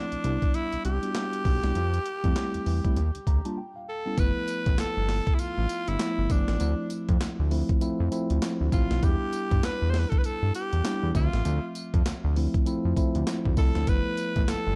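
Confident and slick, this new jack swing R&B groove in D dorian moves at 99 BPM in 4/4, its sixteenths swung at 61%, and it is cut from a longer piece. A raspy, forceful tenor saxophone carries the melody in a pop style with light vibrato, bright and punchy with a smooth top, and a touch of delay trails its lines. Underneath, a mellow tine electric piano plays clean chords through its built-in speakers, moving through Cmaj7, Fmaj7, Ebmaj7 and A7 before a fill from 3.0 seconds and a short break at 3.6 seconds. The second section opens at 4.2 seconds on G13 and settles into Dm9 and Em7 colors. A fat, detuned sawtooth bass sits up front, saturated and sustained with a fast attack and an evolving filter sweep, beside a gritty, compressed, pitched-up breakbeat kit with a thumpy kick, medium-tuned snare, handclaps, hi-hat and tambourine. The production is dark and warm, with little reverb.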